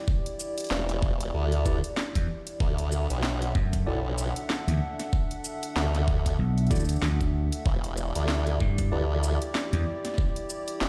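A bright formant-sweep wobble bass with chorus enters at 0.7 seconds in this swaggering, funky glitch hop excerpt, joined from 2.2 seconds by a growly, punchy vintage slap bass that stands out up front, over an overdriven knocking electronic kick and a drum and bass kit of cracking snare, bright hats and shaker. Behind them a dark, nasal analog pad holds detuned sustained chords with sidechain pumping, while a mellow, clean tine electric piano adds background stabs through digital delay from 1.7 to 9.0 seconds. The chords move from Em7 to Dadd9 and back, and the mix sounds as if played on a big sound system in a bare stone room.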